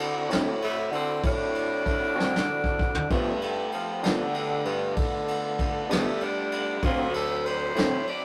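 Soulful and gritty, this slow blues in 12/8 is cut from a longer piece, built on a D7 to G7 and back to D7 change over a rough rehearsal-room recording with tube saturation. A very quiet, mellow horn section holds sustained chords alongside a fat tonewheel organ with slow rotary speaker sitting in the background, while a bassoon with light vibrato carries the bass and an up-front, roomy brush kit with dark cymbals plays a fill from 2.2 to 3.1 seconds. A twangy, slightly broken-up electric guitar with harmonic tremolo joins at 0.3 seconds, and a breathy, raspy tenor saxophone enters at 0.6 seconds with growling, scooped notes in a jazz style.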